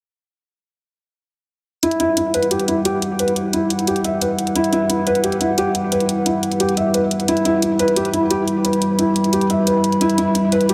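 Drenched in a huge, dreamy reverb, this tense, futuristic excerpt of dark technical drum and bass at 176 BPM in E minor opens on an Emadd9 chord at 1.8 seconds, where a soft, boxy felt-muted upright piano with audible action noise plays delayed arpeggios under a filter sweep alongside overdriven, layered electronic hi-hat. From 2.0 seconds, a deep, detuned analog pad holds chorused, slow-attack chords roughened by vintage 12-bit sampler grit.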